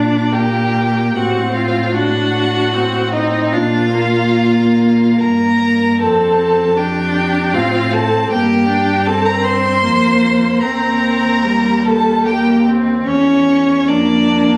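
Classical slow romantic movement for string quartet in Bb major and 3/4, lyrical and tender with a rubato feel around 62-79 BPM, in which a smooth, even first violin sings the melody with vibrato above a distant, expressive second violin that glides through its line with portamento, a clear, intense viola accompaniment and a warm, up-front cello bass, all four bowed by single players and heard in a reverberant recital hall as captured on a phone in the room.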